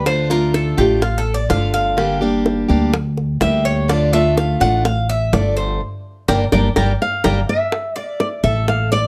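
Cuban son and guajira at 125 BPM in 4/4, this nostalgic, sultry passage from a longer piece moves between D minor and G minor. A metallic, double-strung Cuban tres leads with arpeggios bathed in plate reverb, over a full-bodied picked steel-string dreadnought guitar, a woody, thumpy pizzicato upright bass on gut strings, and tight, high-tuned bongos played with hard hands. The band hits accents from 5.8 seconds and a drum fill arrives at 7.0 seconds, where a fingerpicked classical nylon-string guitar melody enters with analog delay, shortly before the steel-string guitar drops out at 7.4 seconds in a moderate studio room.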